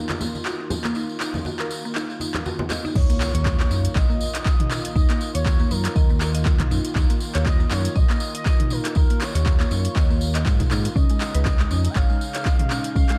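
Warm and driving, this afro house excerpt at 120 BPM in Eb minor opens with a filter-swept woody FM mallet pluck arpeggiating over a detuned analog pad, metallic-hatted overdriven drums, jingly tambourine and ringing hard-hand congas (which stop at 2.9 s), then drops at 3.0 s with a very quiet impact as an up-front tape-warm kick, a smooth gliding sawtooth bass with sidechain pumping and an expressive portamento lead with vibrato and delay join the dark, roomy mix.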